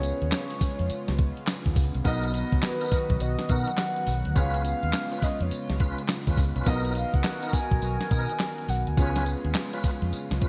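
A crisp, sampler-style 8-bit drum machine stands out most in this bouncy, confident new jack swing excerpt, its thumpy kick, fat snare, handclaps, hi-hat and tambourine sitting up front with gated reverb and a swung sixteenth-note feel. Beneath it, a dark, foam-muted fingered electric bass gives a round, punchy low end, while a clear baby grand piano with long sustain fills in the accompaniment. A mellow, horn-like synth lead carries the melody with a soft attack, vibrato and chorus, and a shimmering, retro pulse-width pad holds sustained chords with a slow attack. From about 2.0 seconds a full tonewheel organ adds stabs, colored by key click, chorus vibrato and a fast rotary speaker. The harmony alternates between C#7 and Bmaj7, and the whole track has a bright 1980s-style digital sheen with light reverb.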